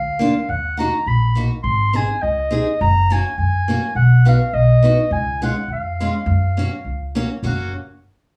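Festive and bouncy, this short excerpt from a longer alpine folk piece moves at 104 BPM in a lightly swung 2/4, the sound of an alpine dance band in F# major, tuned slightly low to A4 = 438 Hz. A warm, vintage clarinet carries the melody up front in a classical style, singing in its upper register from the opening moment. Beneath it, an upright bass with gut strings gives a woody, thumpy pizzicato foundation, while a picked acoustic archtop guitar enters at 0.2 seconds with a bright, boxy accompaniment, complete with audible finger squeak. The harmony travels from D#m through G# and F# to B and C#, returning home to F# by 6.3 seconds. All three players sound close and present, recorded live together in one small room with a moderate studio reverb that keeps the dance band's intimacy intact.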